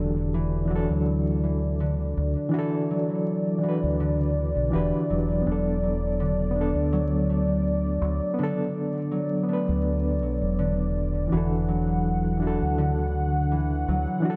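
A gritty, overdriven reed electric piano with fast tremolo and tape echo opens this melancholic, smoky trip hop excerpt, joined from the start by thumb-plucked concert harp arpeggios that ring through their own tape echo, a dark, detuned analog pad holding slow-attack chords with chorus high above, and a round, up-front dub bass. The lightly swung groove moves from Em11 to Bm7/E at 5.5 seconds and settles on E9sus4, with the bass dropping out at 14.1 seconds just before the other parts end. A light reverb and vinyl crackle give the dusky, muffled sound a worn, late-night feel.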